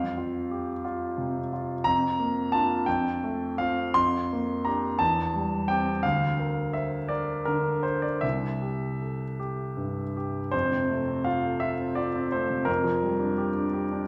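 Moving in a lilting six-eight that bends freely with rubato, this romantic character piece for solo piano unfolds with a hopeful, passionate glow. A warm concert grand carries everything alone, ranging from a deep bass register up into its upper register, with its long sustain letting each harmony bloom. The instrument sounds intimate and polished, close and present, with the mechanical noise of its action audible beneath the tone. Around it, a recital hall's reverb lingers for about 1.5 seconds, as if heard from further back in the room. The harmony moves through a series of turns before settling on a fresh phrase at 10.5 seconds, and the passage, cut from a longer piece, stops at 14.1 seconds while still in motion.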